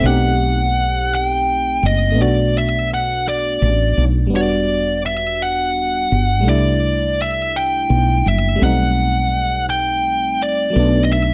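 A fuzz lead guitar, distorted and compressed, carries the melody up front from the very start of this slow, late-night R&B excerpt in 6/8 at 56 BPM, joined at once by a glassy, bell-like FM electric piano with a warbling chorus and a growly, round fretless bass with a woody, punchy tone and analog chorus. The yearning mood comes through a moody chord cycle of B7b9b13, Bm7, Em9 and C69 that returns to B7b9b13 at 8.6 seconds, all set in a digital ambience that runs through the 11.3-second fragment.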